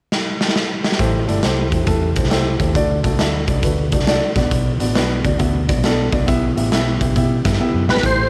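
A small room colors this short, passionate, urgent cut from an uptempo 1960s-style soul piece, swung in 4/4. A raw garage drum kit opens alone with a fill at 0.1 seconds, its punchy kick, medium-tuned snare and hi-hat sounding saturated and gritty in a bright stone room that pumps, with a rolled-off top and the kit placed up front. At 1.0 seconds a dark concert grand piano and a vintage muted fingered electric bass enter together: the piano is mellow and intimate, with audible action noise and deep bass, while the amped, foam-muted bass stays round and low. The chords move from Am7 through D and Bm to Em, and the drums play another fill just before the close. At 7.9 seconds a full, lightly overdriven tonewheel organ takes the melody, sitting up front with chorus vibrato and a slow rotary speaker as the cut ends.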